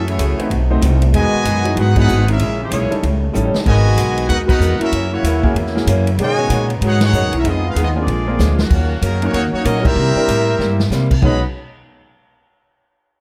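A growly, woody upright bass sits up front in this joyful, swinging big band jazz excerpt, beneath a bright, roomy trumpet section carrying the melody, a mellow trombone section on a second line, a very quiet, smooth-topped second trombone section holding sustained chords until 8.7 seconds, a boxy picked acoustic guitar and an intimate baby grand piano with audible action noise in the background, and a swinging drum kit with a boomy kick that adds fills.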